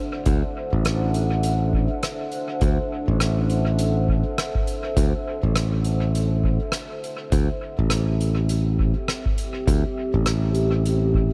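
A dark, detuned ambient pad with chorus and built-in reverb opens this peaceful, spacious ambient dub excerpt, joined at 0.3 seconds by a bright, growly fingered electric bass up front with tube saturation, a dry, tape-warm electronic kick, and a soft-mallet kit whose hi-hat and rim clicks carry dub echo in a big room, all over a gently swung 4/4 as the harmony moves from D9 to C.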